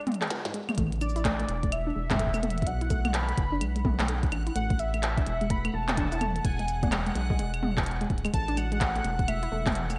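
Bright, 1980s-style digital production with light reverb and a digital ambience frames this melancholic, glitchy IDM excerpt, cut from a longer piece and swung on the sixteenths in 4/4. A warbling, lo-fi pluck with a detuned, dusty sawtooth edge plays chorused, delayed arpeggios from the start. A glitchy electronic kit sits up front, overdriven and wrapped in gated reverb, with a tiny snare, clicky hi-hats, claves, handclaps, shaker and toms, and it opens with a short fill. At 0.8 seconds a rubbery, hollow square-wave bass enters low and dark, alongside a soft, overdriven electronic kick that, like the kit, was re-recorded in a small room. A velvety, smooth synth lead carries the melody from 1.0 seconds with chorus, delay, vibrato and a sub octave, and a reversed, granular texture swells dreamily in the background from 1.9 seconds as the harmony moves through A5, Bm and E7.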